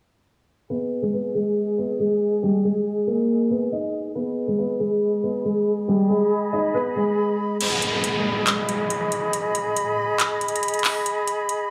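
The recording sounds close, with light small-room reverb, studio ambience and a low-pass filter softening the top end. It is a hard-hitting yet melancholic trap-leaning hip hop cut from a longer piece, at 139 BPM in 4/4 with a half-time feel and centred on G# harmonic minor. From 0.7 seconds, a dark, boxy grand piano carries the melody up front while a breathy flute section holds sustained chords alongside it, mellow and expressive with vibrato and tongued attacks. A filter sweep runs through this opening passage. At 7.6 seconds the piano stops, and an electronic trap kit arrives with crash cymbal, handclaps and metallic hi-hats, joined by a downlifter effect. The flutes carry on until the piece cuts off at 11.7 seconds.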